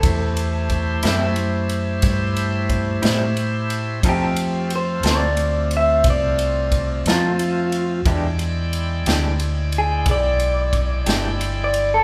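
A slow, straight 12/8 blues at 60 BPM in A minor carries a soulful, smoky mood through this short cut from a longer piece, moving from Am7 to F7 and landing on E7#9 at 8.1 seconds. A dark, slightly broken-up electric guitar through a small old amp takes the fingered solo melody over reedy organ chords with key click and a slow rotary speaker, while a round, deep dub bass and a punchy, airy country drum kit of kick, snare and ride sit up front. A second lo-fi, compressed guitar with tremolo joins at 1.0 seconds as warm accompaniment, and the band plays live together in one room wrapped in moderate large-studio reverb.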